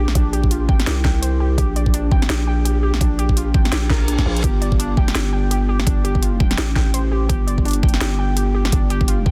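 A growling, buzzy 808-style bass sits up front with tube saturation, anchoring this tense, cinematic half-time drum and bass excerpt in G minor at 168 BPM with a swung sixteenth feel. Above it, a warbly, dusty pluck plays arpeggios through chorus and digital delay, its lo-fi, nasal yet mellow tone shaped by a filter sweep. An overdriven electronic kick knocks beneath a layered drum kit of cracking snare and bright hi-hats, both re-recorded in a small room. The harmony moves from Bbadd9 to G5 at 4.4 seconds, just as a reverse cymbal in the background rises from 4.0 seconds to mark the change. The mix is dry and dense, with a heavily limited modern master, and the passage is cut from a longer piece.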